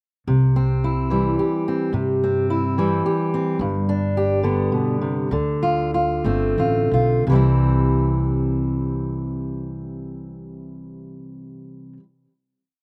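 In an unhurried 3/4 with a straight feel, this short acoustic folk piece moves between 83 and 108 BPM in C major and carries a pastoral, warm mood. A fingerpicked steel-string acoustic guitar provides the accompaniment. Its syncopated fingerstyle sits up front with audible finger squeak and a touch of slapback echo. Beneath it, a pizzicato upright bass on gut strings gives a woody, thumpy, dark tone, playing root and fifth on the main beats. The interlude passes from C through G to Dm7 and slows from 3.6 to 7.3 seconds, and then both instruments settle onto a final C chord held to the end. The sound is dry and close, recorded outdoors with little reverb.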